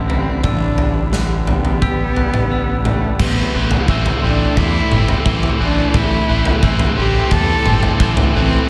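A lightly reverberant small-room sound frames this brooding, cathartic post-rock excerpt in A dorian at 87 BPM, where a rich, bowed cello sings an expressive vibrato melody through digital delay over an ethereal, airy pad, ringing glockenspiel arpeggios and twangy clean guitar arpeggios in the background, a fuzzy overdriven bass and an up-front big rock kit with bright cymbals, until a bright, scooped distorted guitar riff enters at 3.2 seconds as the chords shift from G/A to Amadd9 and the music builds.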